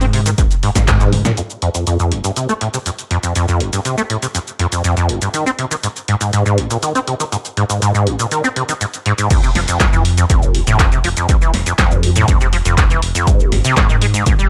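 Playful and raw, this excerpt of acid house moves at 121 BPM in a straight 4/4, built on a squelchy, resonant sawtooth acid bass riff that stays up front throughout, colored by overdrive, ensemble chorus and tape echo, with a filter sweep running from 1.4 to 9.3 seconds. A punchy analog drum machine of cabasa, crash, handclaps, hi-hat, snare and toms plays the whole way, while a round, deep, detuned analog bass with sidechain pumping and an electronic kick appear briefly at the start. After a band accent and drum fill near the opening, the kick returns at the drop at 9.3 seconds, and the bass follows shortly after at 9.6 seconds. The sound is dry and gritty, with little reverb beyond a short room on the snare, clap and hats.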